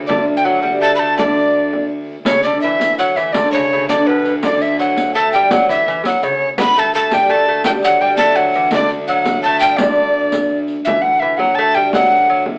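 In a straight triple metre, this festive, ancient-sounding medieval dance excerpt sets a breathy alto recorder melody with chiff and vibrato up front over a bright, fingerpicked gut-string lute line and a clear, airy-bowed viola da gamba drone, joined by soft-handed frame drum and, from 2.3 s to 10.8 s, a riq with jingles, the band playing live in one room with large studio reverb and an AM radio sound.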